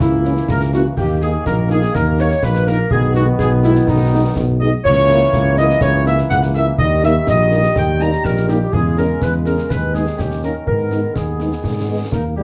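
A stern, resolute military-style march for wind band in G# minor at 124 BPM in 2/4 opens with a clear, tight trumpet section carrying the melody over a mellow woodwind second line, bright sustained trombone chords, an up-front tuba bass and close, dry concert snare, bass drum and clash cymbals. French horns join at 0.2 seconds with soft-attack accompaniment in the background, and a distant, roomy euphonium adds a brief second line at 12.1 seconds. The band sits in a moderate large-studio reverb with a shadowy production, and this cut from a longer piece resolves onto G#m near its close.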